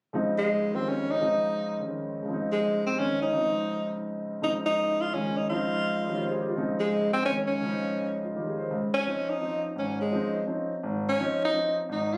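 Jazz waltz in a swung 3/4 at 168 BPM, hypnotic and searching, this fragment of a longer piece sits in Db lydian over a lingering Dbmaj9 chord. A clear concert grand piano with deep bass accompanies from 0.1 seconds, and a warm tenor saxophone enters at 0.4 seconds to carry the melody with vibrato, scooped notes and a smooth top, both parts placed up front. The sound has the feel of a phone capturing the room, with club reverb and compression, and the tune moves into a new section at 8.7 seconds before the fragment ends at 12.2 seconds.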